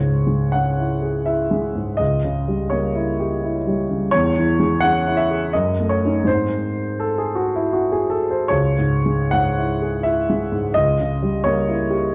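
A grand piano sits up front in a dark, warm production, ringing into a moderate recital hall reverb that lends the notes a soft halo. This is a romantic classical character piece for solo piano in C# minor, passionate and bittersweet in mood, moving in 3/4 at around 82 BPM. The beats are uneven, and the rubato gives the phrasing a breathing, searching quality. The piano spans from deep C#2 up to F#5, and its tone is present and close. The harmony shifts from C# minor through a shadowy C# diminished seventh, reaches a G# chord at 6.3 seconds, then returns to C# minor before the diminished colour comes back at 10.7 seconds, as this 12.1-second passage cuts off mid-piece.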